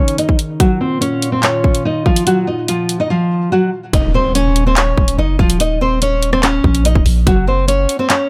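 A fingerpicked nylon-string guitar leads this dark, tense drill excerpt at 144 BPM in a half-time feel, its full-bodied classical tone up front with audible finger squeak, softened by a low-pass filter and trailed by digital delay. A hollow, flute-like pad with chorus holds mellow chords beneath it until 3.9 seconds, while an electronic drill kit of hard-clipped kick, warm hi-hat, handclaps and rim click plays up front, dropping out briefly from 3.1 seconds. At 3.9 seconds a deep, sine-toned 808-style bass arrives with a background impact, all in a dry, close sound.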